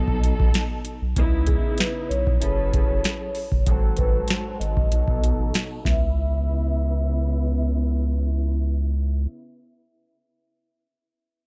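Reflective and dark, this short boom-bap hip-hop excerpt moves with a gentle 16th-note swing in 4/4. A booming analog drum machine sits up front, its deep kick, crisp snare and metallic hats carrying a dry, tape-softened 12-bit sampler grit before the drums drop out at 6.0 seconds. Beneath them, a saturated, triangle-toned sub bass holds thick, sustained notes throughout, while a lush bowed string section with woody vibrato plays accompaniment through a cassette-tape haze and filtering. A vibraphone played with soft mallets enters at 1.5 seconds with a mellow, ringing melody shaded by a slow motor vibrato and a boxy small-room tone. A filter sweep runs through the middle stretch as the harmony moves from C#m9 and F#m11 through a tense G#7b9, settling on C#m7, all set in a small room's ambience.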